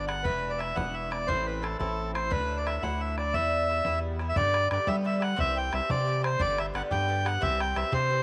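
A reedy, up-front accordion carries the melody of this bright, rollicking Celtic jig in 6/8 at 117 BPM, a piece cut from a longer work that moves from E minor into G major at 4.4 s. Beneath it, a metallic, double-strung Irish bouzouki picks the accompaniment, a bouncy, rubbery square-wave bass sits up front with a resonant filter pluck, and a damped, tight bodhran supplies the percussion. The ensemble is set in a moderate plate reverb.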